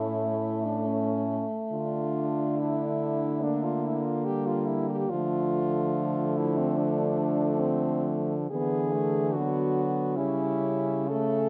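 Classical writing for a quartet of French horns, this short, lyrical passage is cut from a longer piece and carries an elegiac, melancholic mood in a slow, rubato 4/4. The top horn sings the melody up front with a warm tone, while a second horn with a vintage colour shapes an inner line beneath it. A third horn supplies accompaniment with a mellow sound, light vibrato and a distant, roomy placement, and the lowest horn anchors the bass with a punchy attack and light vibrato, also up front. All four play together from the start to the end at 11.5 seconds, moving through darkly shaded minor harmony that leans toward tension in its closing chords. Close, detailed microphones and light reverb keep each voice clear.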